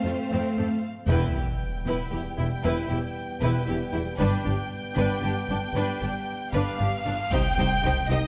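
Heroic and dark, this brief cinematic orchestral cue in 6/8 at 77 BPM in E phrygian sets an expressive, vibrato-rich violin melody over a lush second violin line, clear viola accompaniment, smooth distant cellos and a focused double bass foundation, with a mellow French horn section holding sustained chords in the background. Huge, bright sub drops and impacts strike at 1.1 and 7.3 seconds, with a cymbal swell rising into the second hit. Everything is bathed in the wet reverb of a recital hall within a dark, warm production as the chords move from F through Em and G to Cm.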